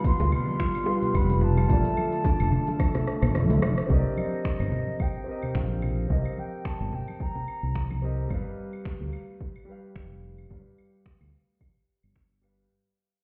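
Sunset chillout with a wistful, relaxed mood and a gentle swung 4/4 groove, in a short cut from a longer piece that sounds muffled as if heard through a wall, set in stone-room reverb. A reedy baroque flute with vibrato carries the melody from a distance until 8.0 s, over a dark, mellow baby grand piano, a breathy pad with chorus, phaser and 12-bit grit that stops at 3.9 s, and ringing concert harp arpeggios in the background. An up-front fingered electric bass and punchy electronic kick anchor a deep house kit of low-passed hats, snaps, claves, cabasa and rim clicks, with hard-handed bongos and congas behind, and after a drum fill where the kick drops out, the music fades from 3.9 s onward.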